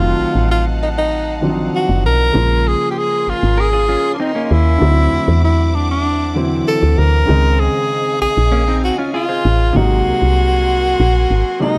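A dark, lightly reverberant soul excerpt at 97 BPM in Db major sets a lush, romantic mood, with a breathy, up-front tenor saxophone singing a vibrato-laden jazz melody full of scooped notes over a tube-saturated baby grand piano, a round, woody FM bass, and smooth sul tasto strings bowing sustained chords in the background, while a clean, fingered semi-hollow electric guitar adds a short riff at 3.6 and 8.5 seconds.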